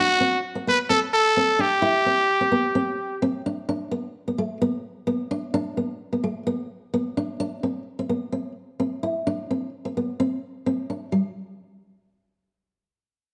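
A raspy, punchy trumpet with light vibrato and a fingerpicked steel-string acoustic guitar, its finger squeaks audible, open this sunny, danceable highlife excerpt at 129 BPM with a gentle sixteenth-note swing; the up-front trumpet melody stops at 3.2 seconds, leaving the guitar accompaniment to carry on through Asus4 and Csus2 chords until 11.3 seconds, all bathed in a wet echo-chamber reverb and a small room's ambience.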